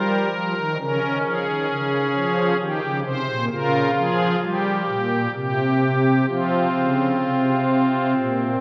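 A church's long, wet reverberation of nearly three seconds surrounds this brief classical excerpt, a grave, dark chorale-style piece in F minor for solo pipe organ at a slow 66 BPM in 3/4. The organ's string celeste stops give a soft, shimmering, romantic voicing, sitting up front and spanning Bb2 to C5. Its harmony moves from Eb/G through Db, C minor and G minor, pauses on an unharmonized moment at 5.3 seconds, and settles on a bare F5 sonority at 6.3 seconds.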